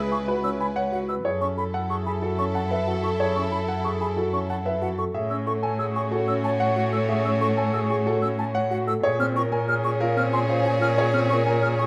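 Hypnotic and urgent, this short passage of minimalist classical pattern music moves at 185 BPM in a straight 6/4, centred on F# minor and cut from a longer piece. A rich, focused solo cello sits up front on the bass line, bowed with vibrato, while a clear, lush symphonic string section sustains smooth, even chords above it. Two pianos share the texture: a grand piano with a smooth, vintage tone carries the melody, and a concert grand with natural deep bass rolls out arpeggios beneath it. An airy silver concert flute adds tongued arpeggios high in its range with lifted highs and vibrato, and a soprano saxophone in classical style traces a second line in the background with light vibrato. The harmony shifts from C#m7 to F#m11, then A6 at 5.1 seconds and A#m7 at 9.0 seconds, all bathed in light reverb.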